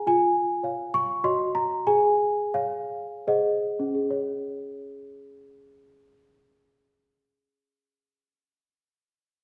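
A worn celesta carries this tender, innocent classical lullaby alone from start to finish, its bell-like voice sitting up front and sounding slightly out of tune, with the soft thud of felt hammers beneath each note. Set in a gentle triple metre with a straight feel, the music opens by slowing down through its first phrase, easing into a cadence at 4.1 seconds before a second section begins and carries on until the cut at 9.4 seconds. The harmony moves from Db/F through Ebm7/Gb and Db/Ab to Ab7 before settling on Db5 as the new section starts. The celesta spans a range from Db4 to Db6, keeping its sweet, delicate character throughout. A wet recital hall reverb with a 1.4-second decay surrounds the instrument, giving it the resonant air of a church or concert hall.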